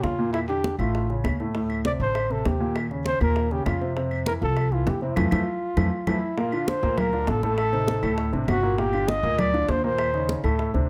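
A brisk 4/4 pulse at 199 BPM drives this sophisticated, sunny Afro-Cuban jazz excerpt in F major, where a dark, breathy trumpet with vibrato and plate reverb sings an intimate, up-front solo over a warm grand piano, a thumpy pizzicato upright bass, bright high-tuned congas, soft-handed bongos and woody, distant claves, before a band accent at 5.2 seconds and a drum fill at 5.8 seconds lead into a turn to Bb major at 6.4 seconds.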